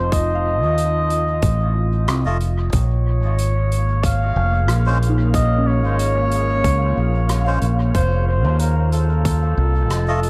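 Spacious and hazy, this ambient dub excerpt floats a veiled, bucket-muted trumpet melody with dub echo over an up-front fingered electric bass, a tight overdriven electronic kick, a distant, roomy soft-mallet kit of hi-hat and rim clicks, a deep, dark detuned pad and gentle FM bell arpeggios, while breathy, nasal melodica stabs enter at 2.3 seconds and an airy wind-like noise texture joins at 3.8 seconds over chords moving from F7 to Bbm7 and back to F7.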